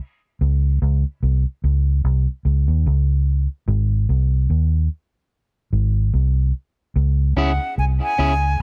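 A slow, loping 4/4 groove with a light swing on the sixteenths carries this hypnotic, deep dub reggae fragment, cut from a longer piece. The vintage muted fingered electric bass opens alone at 0.4 seconds, its dark, round, foam-muted tone sitting punchy and up front in the echo-heavy mix, moving from an unaccompanied stretch to a G# chord. At 7.4 seconds, just after the harmony settles onto C# minor, an electric guitar at the edge of break-up joins quietly, its picked, slightly broken-up tone thinned by a high-pass filter and trailed by dub echo. A bright silver concert flute enters at the same moment, airy and close-miked with vibrato and a soft attack, its short line drifting through dub echo of its own. The small room ambience lends the whole fragment an intimate, cavernous depth.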